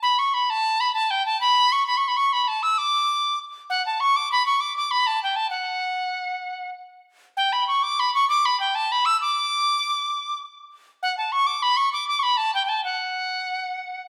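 Celtic folk in a bright, cheerful D major, this excerpt from a longer piece rolls along in 12/8 at 131 BPM with a solo wooden whistle, reedy and pure with a crisp chiff and vibrato, sitting close and up front in the high register while a stone room's reverb rings around it, the tune moving into a new passage at 3.7 seconds and running until 14.0 seconds.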